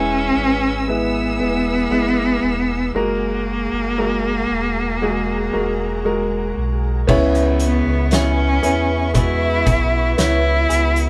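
A bowed cello, clear and boxy with vibrato, carries the heartfelt melody up front in this slow, emotional pop ballad excerpt at 58 BPM, over a concert grand piano with deep bass and long sustain, a deep, mellow sub bass with octave, and a dark, woody string section held lush in the background. At 7.1 seconds, as the harmony arrives at C#m7 after E and F#add9, a loose indie drum kit enters with a fat snare, punchy kick and dark cymbals in a pumping room, alongside a clean, picked electric guitar recorded direct and playing arpeggios in the background. The whole band sounds as if playing live in one room with light reverb.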